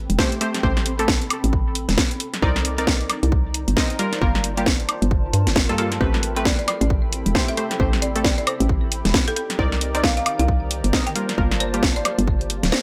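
A light reverb and a tape-warm, small-room sheen give this late-night, soulful UK garage cut a close, intimate sound, taken from a longer piece. It moves at 134 BPM in 4/4 with a swung two-step feel in A phrygian. An up-front house kit with a cracking snare, hi-hat and woodblock sits over a punchy electronic kick, while a hollow, bouncy FM bass knocks beneath. Detuned sawtooth chord stabs, bright and chorused with a filter sweep and delay, outline Am9, Cm9 and Gm9 over a cloudy, evolving granular pad that pumps softly in the background. At 6.0 seconds a smooth analog pad joins behind the mix, and at 6.5 seconds a woody folk marimba played with hard mallets adds a dry, rustic melody echoed by delay.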